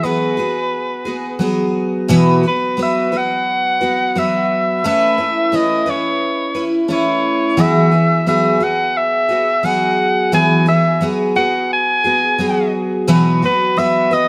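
A vintage-toned soprano saxophone carries the melody up front, its vibrato and scooped notes giving the solo line a pop style between B4 and G#5. Beneath it, a picked twelve-string acoustic guitar provides a full-bodied, shimmering accompaniment, its octave-doubled strings ranging from B2 to B4 and sitting just as close to the listener. This carefree, sunny pop fragment moves at an easy 88 BPM in a straight 4/4, set in E major with tuning pitched to A4 = 444 Hz. The harmony drifts through a rootless Eadd9, Bsus4 at 2.1 seconds, Aadd9 and back to Eadd9, before landing on Bsus4 again at 13.1 seconds. Both parts play throughout the 14.3 seconds, cut from a longer piece, with a light reverb lending the recording a gentle sense of space.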